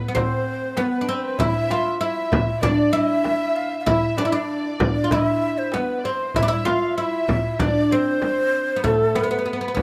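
Melancholic and hypnotic, this Arabic maqam ensemble piece moves at 97 BPM in a straight 4/4, tuned slightly above standard pitch at A4 = 441 Hz, and is cut from a longer work. A bright, woody fretless oud carries the melody from the start, plectrum-plucked on double strings and sitting up front with a deep tone. Above it, a chamber violin section plays a soft, sul tasto second line with light vibrato and a smooth top, while a breathy, mellow end-blown ney joins at 0.2 seconds on the same upper line with tongued notes and vibrato. The percussion also enters at 0.2 seconds: a clay-shell darbuka played with hard hands, its natural skin given a compressed, saturated edge, over a large, deep frame drum heard in a small room. Light reverb surrounds the rough home-demo mix, which stays in a single section through to 9.8 seconds.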